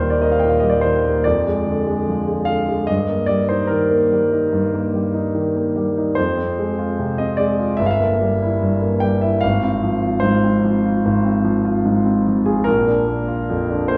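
Passionate and hopeful, this romantic character piece for solo piano unfolds with a flowing rubato feel, a short passage cut from a longer work. The concert grand sits up front with a clear, natural tone, deep bass and long sustain, spanning a broad range as its harmonies wander through diminished colours before arriving on a Bb chord at 12.7 seconds. A wet recital hall reverb surrounds the instrument, lending the sense of a church or concert hall.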